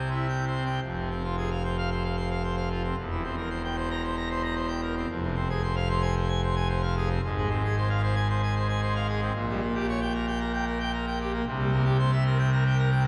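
In a straight, steady four, a solo pipe organ with full registration and bright mixtures plays a majestic, stormy classical toccata, heard as a short passage cut from a longer piece. The brilliant, romantically voiced sound sits up front and spans from the deep pedal bass to the upper treble, moving through dark minor harmonies and tense diminished and dominant chords. A lingering church reverb surrounds the organ for the full 13.1 seconds.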